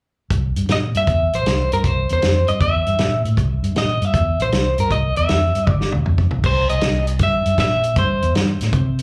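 Dark, foam-muted electric bass and a tight, mid-forward soul drum kit with slapback echo open this gritty, laid-back electric blues shuffle at 157 BPM in C mixolydian at 0.3 seconds, before a slightly broken-up picked electric guitar with tremolo and slapback echo carries the melody over C7 and G7, and a drum fill at 5.7 seconds leads back to C7, all heard as a live club gig through the venue's PA.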